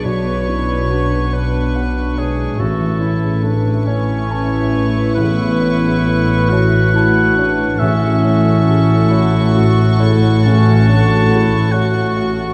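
A floating, sul tasto violin section carries a high melody through this slow, rubato orchestral film-score cue in 6/8 and F# minor at 46 BPM, longing and bittersweet, while a vintage-toned solo oboe, a clear, punchy clarinet and a distant, rich second violin section weave supporting lines, a dark, mellow baby grand piano and a soft-edged viola section fill the accompaniment alongside a roomy French horn section's sustained chords and very quiet, ringing harp arpeggios, and intimate cellos with light vibrato join the double bass section to anchor the low end, the whole cut from a longer piece set in wet scoring-stage reverb with vinyl crackle as the harmony moves from Bmadd9 to Aadd9 at 2.6 s and F#m7/A at 7.8 s.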